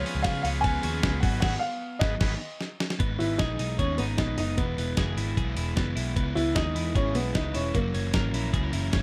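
Jangly indie pop with a restless, wistful mood, cut from a longer piece and moving at a brisk, straight pulse. A clear, woody upright piano carries the melody with an intimate feel, its action noise audible and its notes short in sustain. A compressed twelve-string electric guitar plays clean, picked arpeggios through spring reverb, while a crunchy overdriven guitar fills in the accompaniment, and a buzzy vintage combo organ with spring reverb adds color only until 2.4 seconds. Underneath, a dark, foam-muted picked bass sits round and amped, and a gritty, sampler-style drum kit with a thumpy kick and fat snare stands up front, using crash, hi-hat and ride. The band hits an accent from 1.4 seconds, capped by a drum fill, before the harmony settles into a minor-key passage at 3.0 seconds, all set in a light reverb.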